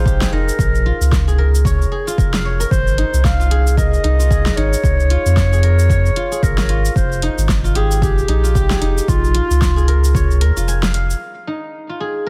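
A lightly swung 4/4 groove at 113 BPM, built on a punchy electronic kick and a layered deep house kit of hi-hat, shaker and fat snare, drives this meditative, earthy organic downtempo excerpt, where a round, up-front sine sub bass pumps beneath ringing, silvery guzheng arpeggios softened by a low-pass filter and tape echo, and a warm, classical-style solo clarinet carries the melody through its own tape echo until a brief break at 10.7 seconds, after which the guzheng rings on alone from 11.2 to 12.3 seconds in a dry, dense, heavily limited mix.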